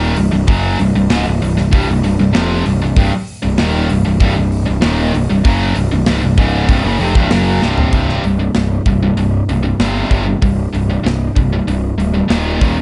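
A bright, double-tracked distorted guitar leads this epic, aggressive heavy metal excerpt with a picked riff, while a growly, fuzz-laden overdriven bass sits just as far forward beneath it. A polished acoustic drum kit with an airy big-room sound, tight kick, medium-tuned snare, hi-hat and toms enters at 0.2 seconds, and a drum fill at 7.6 seconds leads into a new section at 7.9 seconds, where the harmony moves to power chords. Light reverb and a dark, warm production shape the overall sound.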